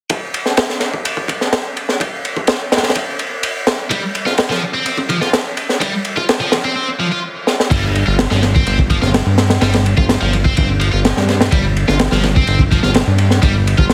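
A crunchy, saturated breakbeat drum kit drives this funky, swaggering breaks cut at 126 BPM in straight 4/4, its dark cymbals, high-tuned snare and tight kick sitting up front with a gritty, rolled-off top. A bright, scooped high-gain guitar enters at 3.9 seconds with a distorted, double-tracked riff over Fsus2, touched by digital delay. After a drum fill at 7.5 seconds, a fat, detuned sawtooth bass with an evolving filter pluck joins at 7.7 seconds as the harmony moves to G5, all set in a small room and pressed into a heavily compressed, radio-like sound.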